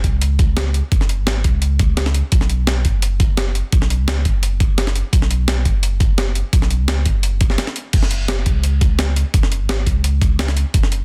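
A thumpy, gritty electronic kick sits up front in this lush, melancholic liquid drum and bass excerpt, its pitched-up, sampler-style sound carrying studio reverb until 10.8 seconds. A compressed breakbeat kit with a medium-tuned snare, hi-hat and crash cymbal adds a tape-warm colour and its own studio reverb, while a deep, round sine sub bass holds sustained notes with a fast attack underneath. A brief break falls at 7.6 seconds, and the dense, heavily limited master has little room reverb.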